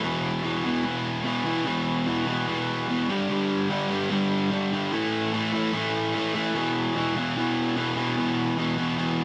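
Driving and heavy, this short rock excerpt features a single overdriven electric guitar playing alone from start to finish over about 9.2 seconds. The picked, double-tracked guitar sits up front in the mix with a warm, gritty tone, working in a low register from E2 up to A3. Its power chords move from E5 to G5 at 3.1 seconds, then to A5 and back to E5 at 6.5 seconds, in a straight 4/4 feel. A moderate studio reverb gives the part some room. The passage is cut from a longer piece.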